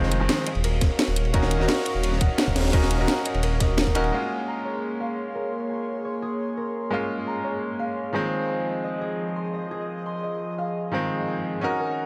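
This is a short, melancholic and soulful cut of liquid drum and bass, lifted from a longer piece, in a straight 4/4 feel. A bright, brilliant concert grand piano sits up front with tape echo, joined throughout by an airy, breathy pad whose sustained chords carry chorus and sidechain pumping, and a ringing, thumb-plucked concert harp playing arpeggios through a low-pass filter and tape echo. For the first 4.1 seconds a deep, rumbling detuned saw bass with tube saturation anchors the low end, while layered drums drive underneath: a gritty, saturated breakbeat kit with high-passed cymbals and a high-tuned snare, a garage kit with a cracking snare, and a tight electronic kick entering at 0.8 seconds. The band hits an accent at 3.8 seconds, and then the bass and all three drum kits drop away, leaving piano, pad and harp to drift over the remaining chord changes. Light reverb and small room ambience give the whole a close, intimate space.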